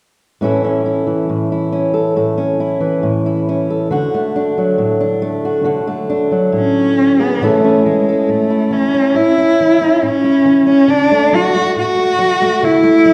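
Set in a straight, unhurried 4/4 pulse, this peaceful, pastoral acoustic folk piece moves at a gentle walking pace through two short sections. A fingerpicked steel-string acoustic guitar opens at 0.4 seconds, its fresh strings ringing with a warm tone, while finger squeaks add an intimate, handmade touch as it carries the accompaniment. At 6.6 seconds a single bowed cello takes up the melody, sitting up front and slightly louder than the guitar, with a soft attack, expressive vibrato and sliding portamento that lend it a singing, warm voice. Both instruments play until the clip, cut from a longer piece, stops at 13.1 seconds. A wet recital hall reverb surrounds the duo with a spacious, resonant glow that evokes a church or concert hall.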